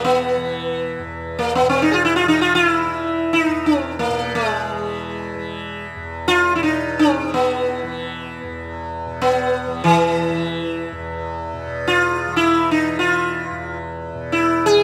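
Radiant and meditative, this Hindustani classical excerpt in E major unfolds in free time. Up front, a plectrum-plucked sitar carries the melody with a buzzing tone and shimmering sympathetic strings, while a softly plucked, bright tanpura sustains a quieter drone beneath it throughout all 14.8 seconds. A moderate recital hall reverb gives the pair an open, resonant space.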